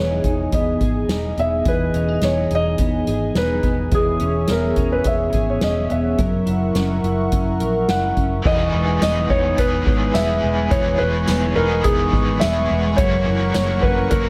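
A muted, intimate felt piano carries the melody with tape echo through this floating, ethereal dream pop excerpt in E lydian at 106 BPM, over a smooth detuned sawtooth pad with chorus, dark picked arpeggios from a clean electric guitar with analog chorus and echo, a round, punchy foam-muted fingered bass, and a soft-mallet drum kit with dark cymbals, boomy kick and tambourine, until at 8.4 seconds a bright, double-tracked overdriven garage guitar with tremolo and lush chorus joins alongside a very quiet, bell-like celesta, all set in a moderate plate reverb.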